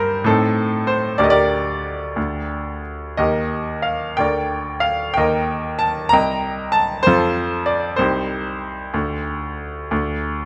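A solo baby grand piano opens the recording at once, carrying a melancholic, reflective classical passage cut from a longer piece. The playing is lyrical and moves with a loose rubato over a 6/8 metre, giving the phrases room to breathe. The harmony drifts from a diminished chord through G minor, E-flat and B-flat colours, then passes through C minor and F before settling on an open G chord near the close at 10.5 seconds. The piano spans a generous range from deep C2 up to B-flat 5. Its tone is clear and natural, with short sustain, and it sits up front in a light reverb that keeps the sound intimate.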